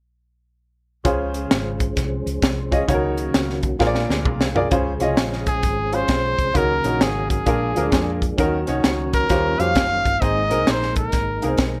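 This excerpt of uptempo gospel opens at 1.0 seconds with a bright, woody upright piano up front, alongside a mellow, flute-like tonewheel organ with key click, chorus vibrato and a slow rotary speaker sitting in the background. A hollow-body short-scale electric bass, dark and round, and a crisp fusion drum kit with a punchy kick and high-tuned snare in a pumping small room come in at 1.1 seconds, driving a swung 4/4 at 131 BPM in Db major. The harmony moves through Dbmaj7, Gb6/Db and Bb7, and a drum fill carries the band into a new section at 4.7 seconds. From 5.5 seconds a present trumpet with light vibrato takes the melody in a pop style, ranging from Ab4 to F5 as the chords move through Ebm7 and Eb13 toward Ab. Light reverb frames the jubilant yet reverent mood.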